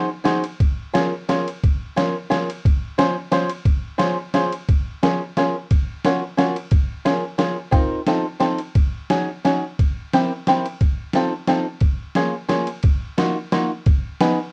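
A twangy, fingerpicked bluegrass banjo opens this short cut from a longer musette waltz, picking an up-front accompaniment in Db major at 177 BPM with a swung, rubato 3/4 lilt, and a pitched-down, muffled, compressed trip hop sampler-style drum kit joins at 0.3 s with a thumpy kick, ride cymbal and a medium-tuned snare. At 4.7 s the harmony turns to Bb minor, moving through seventh and suspended chords before settling on Ebmadd9 and Abm in the closing bars. The whirling, nostalgic mood sits in a dark, small room with a short, moderate ambience.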